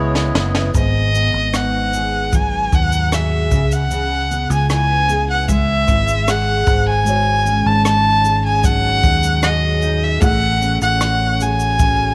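A straight 4/4 pulse at 76 BPM carries this tender, wistful acoustic pop excerpt, where a rich, focused bowed violin with vibrato sings the melody up front over dark, double-tracked fingerpicked jumbo steel-string guitar with finger squeak, a round electric bass, and a jazz brush kit with a boomy kick and high-tuned snare whose fill opens the piece alongside a reedy, nasal harmonium that stops at 0.7 seconds, while a soft, felt-muted upright piano with audible action noise sits in the background, dropping out after 0.8 seconds and returning at 7.0 seconds as the chords move from C#m7 through G#m7 and G#7sus4 to F#madd9/A.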